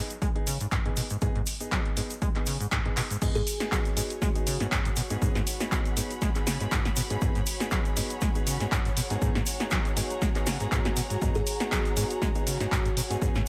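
Acid house with a trippy, playful mood, cut from a longer piece and set in 4/4 with a light swing on the sixteenths. From the opening seconds a smooth, vintage grand piano plays stabs through a delay, while a dry, punchy analog drum machine brings crash cymbal, handclaps, hi-hat and snare alongside an up-front electronic kick, with a grainy tube shaker sitting in the background. A squelchy, resonant sawtooth acid bass riff, driven by overdrive, lush chorus and delay, carries a filter sweep with a fast attack and decaying notes. After a drum fill at 3.0 seconds, the drop arrives at 3.2 seconds, bringing in a bowed symphonic string section with vibrato and a focused, smooth top, pumping against the kick. Moments later a nostalgic, detuned tape-like pad joins, warbling in the background through chorus and phaser. A soft, woody kalimba adds brief plucked phrases with delay, heard at 3.4 seconds and again near the end. 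The whole sits in a small room ambience with light reverb, the drums up front and the pad, shaker and kalimba tucked behind.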